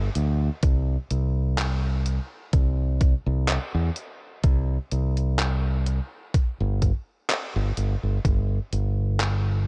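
Vaporwave with a dreamy, woozy feel and a gentle sixteenth-note swing, cut from a longer piece, where a bright, direct fingered electric bass sits up front in its low register beside a thumpy, overdriven sampler-style kick, while a detuned 8-bit drum machine adds overdriven handclaps and hi-hat, all captured dry with a dulled cassette-tape top end.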